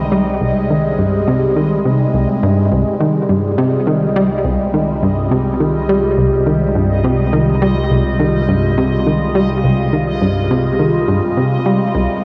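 A swirling, detuned phased pad holding sustained C minor chords and a punchy, funky plucked bass riff with analog delay open this mysterious, cosmic space-music excerpt at 104 BPM, underpinned by a deep, round sustained bass note with tube saturation and a bubbling, resonant stepped-filter texture with chorus and reverb, all draped in a moderate plate reverb and the warbling pitch drift of worn cassette tape.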